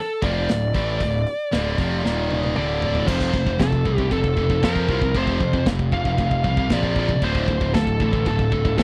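A straight 4/4 pulse at 116 BPM drives this heavy, aggressive heavy metal excerpt, where a dark, distorted lead guitar with slapback echo opens alone at 0.0 s, carrying the melody up front before two bright high-gain rhythm guitars, a growly overdriven picked bass and a tight acoustic drum kit with a rolled-off top join at 0.2 s. The two rhythm guitars play low riffs in the background beneath the prominent fuzz bass, while the drums deliver a fill from 2.1 s to 3.1 s as the harmony moves from D minor through Eb5 and D5 into a new section on F. The sound is dry and close, like a 1970s-style studio recording, with little reverb.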